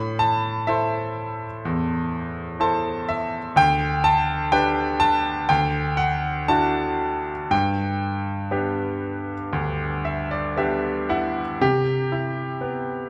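A bright, intimate grand piano plays alone from the start in this tender, calm classical solo piece in G major, moving with rubato at 56-63 BPM in 4/4 and tuned to A4 = 445 Hz; its up-front sound carries audible action noise and long sustain inside a moderate recital hall reverb, with fills at 2.1 and 9.5 seconds, chords drifting from Am through G/D, Dadd9 and G, and a new section arriving on Cmaj7 at 11.6 seconds before this fragment of a longer piece breaks off.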